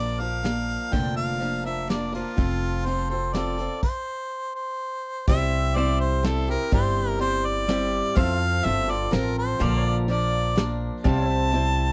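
Honky-tonk and classic country in an easygoing, heartfelt 3/4 at 124 BPM in C mixolydian, cut from a longer piece, where a warm, close-miked harmonica with light vibrato carries the melody up front over a boxy, picked swing-style acoustic guitar with old strings, a thumpy pizzicato upright bass on gut strings, and a soft brush drum kit with dark cymbals entering at 0.4 s; after a stop at 3.8 s, a clean, compressed pedal steel guitar with lush chorus and volume swells slips into the background at 5.8 s, heard through a dry, close 1970s-style studio sound.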